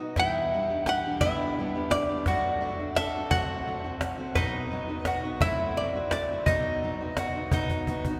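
A wet cathedral reverb surrounds this short acoustic folk passage, recorded in a church or concert hall, setting an intimate, wistful mood at a slow 57 BPM in 6/8. A picked steel-string acoustic guitar provides the accompaniment, while a dark, clean, compressed hollow-body archtop guitar, miked and amplified, carries the melody. A round, double-strung mandolin plays arpeggios over chords moving from Em7 and G through F#dim to B, and a snappy, close cajon played with soft hands sits up front, closing with a drum fill at 7.7 seconds.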